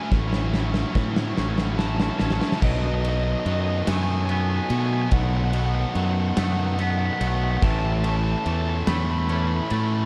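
A growling, overdriven fingered bass sits up front in this hopeful, cinematic post-rock passage, moving slowly at 48 BPM in a straight 6/8. A big-room acoustic drum kit with a fat snare and punchy kick plays a fill through the build-up over A6 in the opening 2.6 seconds, before the harmony shifts to B7 and then settles on A at 7.6 seconds. Above, a dark, smooth overdriven lead guitar sings the melody through tape echo, a twangy, scooped clean guitar picks arpeggios with echo in the background, and two bright overdriven guitars, one a cranked stack, drive riffs, all under light studio reverb and a dark, warm production.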